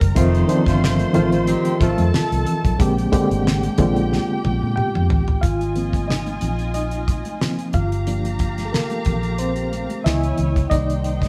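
A lightly swung sixteenth-note groove in 4/4 drives this lush 1970s-style soul passage, with a dry, fat-snared drum kit up front, a round, foam-muted electric bass, very quiet high-tuned congas, brief mellow jazz horn stabs in octaves near the start, distant French horns holding soft chords through the first half and returning at the very end, veiled con sordino strings, and a reedy, worn, slightly out-of-tune electric piano with light overdrive and fast tremolo that takes a solo at 5.4 s after a drum fill from 4.1 s, the band sharing a stone room's moderate reverb.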